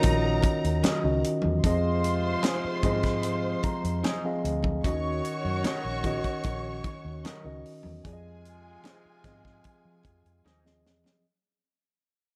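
A mellow, up-front tine electric piano accompanies this smooth, silky 1970s-style soul excerpt at 75 BPM over Ebm7 and Fm7, adding a fill at 3.2 seconds, joined by a tight funk drum kit with a high-tuned snare, a dark, foam-muted fingered electric bass, a bowed string section with vibrato and portamento, distant horn stabs, very quiet ringing congas and a bright, twangy guitar riff entering at 0.8 seconds, as the mix fades out in light reverb toward a drum fill at 10.4 seconds.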